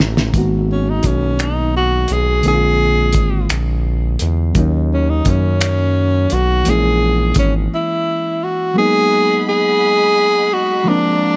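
A breathy, whispered tenor saxophone carries the melody from 0.7 seconds, playing up front in an intimate jazz style with light vibrato, soft attacks and scooped notes. This is a slow, late-night R&B fragment in six-eight, yearning in mood and cut from a longer piece. A reedy electric piano plays the chords throughout through its built-in speakers. A smooth sawtooth-and-triangle synth bass sits up front beneath a cloth-damped, thuddy drum kit, whose muffled, gritty, lo-fi character gives a fat snare, a tight kick, hi-hat and finger snaps, all heard after an opening fill. The bass and drums drop away around 7.7 seconds for a short break, and a lush, distant string section, bowed with vibrato and portamento, returns in the background at 8.7 seconds beneath the saxophone as the harmony cycles back to its opening minor seventh. The sound is close and dry, with little reverb.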